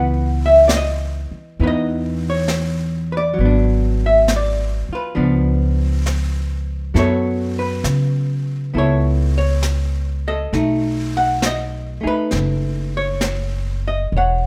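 A slow swung pulse of 67 BPM in 4/4, with a 68% lilt on the eighth notes, carries this smoky, wistful jazz ballad in C# minor, cut from a longer piece. A hollow-body archtop guitar sits up front with a dark, clean, picked tone, comping through a range from E3 to F#5 across the full 14.5 seconds. Beside it, also up front, the upright bass is plucked pizzicato on steel strings, its woody sound reaching from E1 to C#3. At 0.7 seconds a jazz brush kit joins further back, its brushed snare, hi-hat and high-tuned snare heard in a small acoustic room. The harmony opens on C#m9, moves through G#m7b5 and C#7b9 to F#m7, and settles on B9 at 10.5 seconds, all wrapped in a light reverb.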